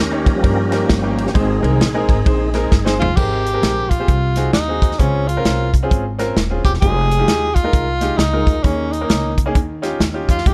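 A breathy, intimate tenor saxophone carries the melody from 3.0 seconds in this jubilant yet reverent uptempo gospel excerpt, swinging at 132 BPM in Ab major. It takes over from a full, lightly overdriven tonewheel organ, which opens with a short solo of sustained chords through a slow rotary speaker and chorus vibrato, capped by a drum fill. Underneath, a brilliant grand piano accompanies, a woody, thumpy upright bass holds the low end, and an up-front soul drum kit with dark cymbals and a tight kick enters at 0.3 seconds, all set in a small room with a dusky, mellow production.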